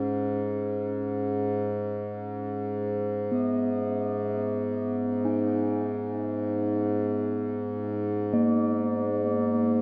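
Meditative and spacious, this free-time world meditation piece in G# minor is cut from a longer work and runs 9.8 seconds. A hand-pumped harmonium holds a reedy, breathing drone on G#2, sitting up front with a boxy small-room character. Alongside it, a bronze singing bowl struck with a wooden striker rings dark and metallic between A#3 and D#4 with a slow beating, and the whole piece is set in a vast, echoing space with a huge ambient reverb.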